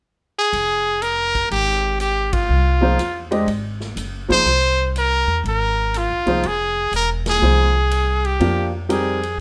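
Intense and hypnotic, this brief modal jazz cut from a longer piece swings at 122 BPM in F dorian, with a brilliant, forceful trumpet carrying the melody in light vibrato and scooped notes over a woody, thumpy pizzicato upright bass and a natural big-room drum kit with a punchy kick, as a clear, polished upright piano joins at 2.8 seconds, band accents strike at 2.2 and 7.2 seconds, and the long Fmadd11 harmony shifts to Cm near the close in light reverb.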